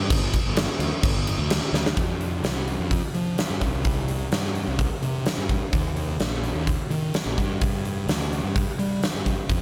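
A dark, fuzz-laden fingered electric bass opens this brooding, cathartic stretch of quiet-loud alternative rock. It is joined almost at once by an acoustic drum kit with a huge arena sound. The bass stays up front with a round, overdriven tone, moving between G1 and G3. The kit sits close too, with a punchy kick, a medium-tuned snare, bright cymbals among its crash and hi-hat, and a pumping hall ambience around it. A drum fill at 1.7 seconds leads into a new section at 2.0 seconds, which carries the straight 4/4 groove to the end of this fragment of a longer piece under a light reverb.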